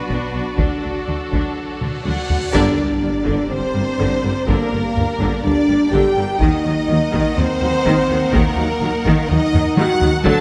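A cinematic, epic orchestral film-score cue in G harmonic minor at 124 BPM in a straight 4/4, heroic in mood and cut from a longer piece. Violin sections carry a clear, focused melody and a distant second line over lush bowed string chords, while a dark, roomy French horn section, the most prominent part, holds sustained chords above rich vibrato violas and a bowed bass of cellos and double basses. A close, dry taiko ensemble struck with heavy sticks drives the rhythm throughout, and the opening build-up from Bm to D swells into a huge cymbal swell and sub drop starting at 1.7 seconds, with a drum fill leading into a band accent and impact at 2.5 seconds. At that point the harmony shifts to Gm, a very quiet, mellow tuba joins the low end, and articulate calf-head timpani with hard mallets mark the downbeat. The chords move to Ebm at 6.4 seconds, and a second drum fill arrives near the close, all set in a moderate scoring-stage reverb.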